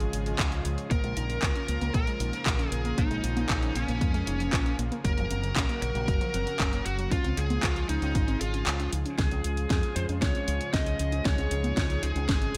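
Nostalgic and danceable, this italo disco cut moves at 116 BPM in a straight 4/4, tuned to A4 = 444 Hz and drifting through Db, Bbm and Gb chords. A lush, thick unison pad holds sustained chords in the background throughout. A round, envelope-filtered fingered electric bass anchors the low end alongside a punchy overdriven electronic kick and a house kit of congas, handclaps, bright hats and a cracking snare treated with gated reverb. From 0.9 s a bluesy, distorted lead guitar carries the melody through delay and a low-pass filter, while a warbly, lo-fi pluck with chorus and delay spins arpeggios in the background. Mellow, brassy synth stabs appear at the very start and return at 9.2 s, when the kick has just dropped out briefly and a drum fill arrives with a filter sweep on an analog polysynth. The whole fragment sits in a light reverb, clipped from a longer piece.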